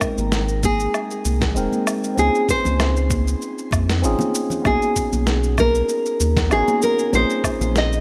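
Sunny and warm, this sunset chillout excerpt moves at 97 BPM in Ab major with a light 16th-note swing, its harmony drifting through lush chords from Abmaj9 to Dbmaj9, B69 and Bbm11. An up-front, full-bodied nylon-string guitar carries the fingerpicked melody with audible finger squeak, tape echo and shimmer reverb, over a worn, slightly out-of-tune tine electric piano that is lightly overdriven through a combo amp and shaped by a filter sweep, echo and shimmer. A deep, round sine sub bass enters at 0.2 seconds beneath gritty, compressed, sampler-style drums: a thumpy electronic kick, with electronic woodblock, shaker and a medium-tuned snare, all with a tape-warm tone and small-room ambience, while bright, hard-hand congas sit in the background.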